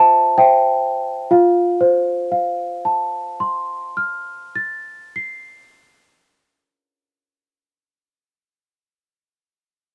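A slow, rubato lullaby in 3/4 at about 62 BPM, it slows down through its opening 1.3 seconds before settling into a longer second section that runs to 7.1 seconds. This short classical piece in F major, cut from a longer work, feels dreamy and innocent. A worn celesta plays alone for the full 9.3 seconds, ranging from F4 up to C7 with a bell-like, delicate, sweet tone struck by medium felt hammers. Its sound is dark and smooth, slightly out of tune, and sits up front, coloured by the grain of cassette tape. The harmony moves from C7 over an F bass to a plain F chord at 1.3 seconds, and light reverb surrounds this home cassette recording.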